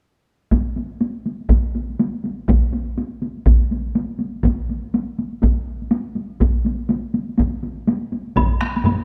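A close, detailed recording set in a moderate concert hall reverb opens this driving, ceremonial excerpt of Japanese traditional taiko drumming at 122 BPM in 4/4, with a 60% swing on the sixteenths. Two up-front taiko ensembles carry the piece from 0.5 seconds: one struck with heavy sticks and carrying a vintage, band-limited tone, the other played with hard sticks in a live room. At 8.4 seconds a third taiko ensemble, heavy-sticked and close and dry, enters alongside a woody woodblock for the final moments.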